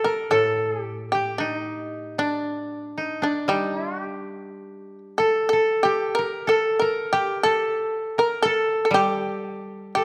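Japanese traditional chamber music unfolds here at a calm, austere pace, moving freely in rubato around 55-63 BPM in 4/4, cut from a longer piece. A shamisen carries the melody from the very start, its plectrum-plucked, fretless tone bright, percussive and buzzing, sitting powerful and up front. Beside it, a koto played with fingerpicks traces a second line in the same register, dry and woody with a gentle warmth, equally close in the balance. From 0.3 seconds a second koto adds a lower accompaniment, mellow and woody, placed quieter beneath the two upper parts. Close, detailed microphones and light reverb keep the plucked attacks vivid, with the tuning set slightly high at A4 = 441 Hz.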